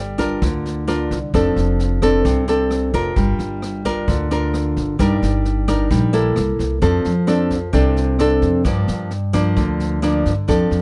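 Romantic and relaxed, this short bossa nova fragment features an up-front, fingerpicked nylon-string guitar with a classical touch moving through Gm7, F6 and Ebmaj7/G chords, a woody pizzicato upright bass beneath it, and a brushed jazz kit with a boomy kick, rim clicks and a medium-tuned snare joining at 0.2 seconds, all captured with close, detailed microphones in a dry, natural studio room.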